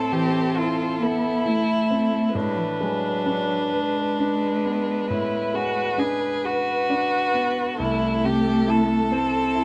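A slow, rubato lilt in 12/8 carries this solemn, yearning fragment of a romantic movement for piano quartet, cut from a longer piece, with all four players sounding together from 0.0 to 9.6 seconds. Up front, a single warm violin sings the melody with focused tone, vibrato and a smooth top. Beneath it, a second violin adds a dark, woody line, while a dark, close cello shapes its own expressive second line with vibrato and portamento. A brilliant concert grand, also up front, supplies the accompaniment across a broad span, pairing bright highs with a deep bass and a faintly vintage, smooth character. The harmony darkens into a diminished chord at 2.3 seconds before settling again near 7.8 seconds, all framed by a moderate studio reverb.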